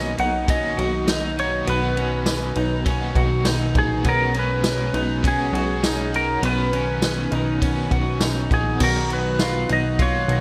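Ethereal and floating, this dream pop excerpt moves at 101 BPM in a straight 4/4, centred on B lydian with chords shifting from Bmaj7 through C#7sus4/B and Badd9 before returning to Bmaj7. A bright, twangy clean lap steel guitar carries the melody with slide and volume swells, coloured by subtle chorus and delay. Beneath it, a darker electric guitar at the edge of break-up picks arpeggios through analog chorus and delay, while a double-tracked overdriven guitar with tremolo sits in the background and a lush string machine holds mellow sustained chords. A plucky, funky analog bass gives fast-attack, decaying notes, and a vintage acoustic drum kit enters at 0.2 seconds, punchy and up front with dark cymbals, tambourine and gated reverb. At 6.0 seconds a very quiet, glassy texture of drifting overtones appears high above, all within a light small-room ambience and bright 1980s-style digital production.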